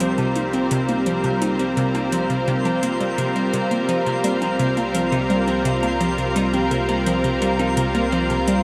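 A lush, detuned sawtooth pad sits up front with sustained chords and shimmer reverb, while a clean twelve-string electric guitar fades in with background arpeggios trailed by tape echo and a warbling analog drone rises beneath on a low C. This ambient, sequencer-driven space music moves at 85 BPM in a straight 4/4 over a C7 chord, with a hollow, nasal square-wave pluck bouncing through a riff colored by cassette tape and echo, and metallic electronic hi-hats with woodblock ticking along. A twinkling granular texture with octave-up shimmer sparkles in the distance, and the whole dreamy, cosmic mix is soaked in a huge 7.1-second reverb, cut from a longer piece.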